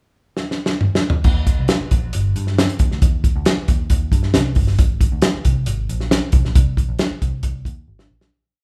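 Warm and danceable, this short, uptempo 1960s-style soul piece moves at 136 BPM in a straight 4/4 feel in E-flat major. The acoustic drum kit opens with a fill at 0.4 seconds, then settles into a backbeat soul groove across crash cymbal, hi-hat, kick, snare and toms, sitting up front with a fat snare, a tight kick, dusky cymbals and a rolled-off top. At 1.3 seconds a vintage electric bass enters, picked and foam-muted, with an amped, round tone and a melodic, syncopated line sprinkled with muted ghost notes, ranging from G1 to G2. After a one-bar pickup, the verse runs from 1.2 seconds and begins fading out at 6.6 seconds, with a last drum fill near the very end. The two players sound like a band playing live in one room, wrapped in a moderate large-studio reverb.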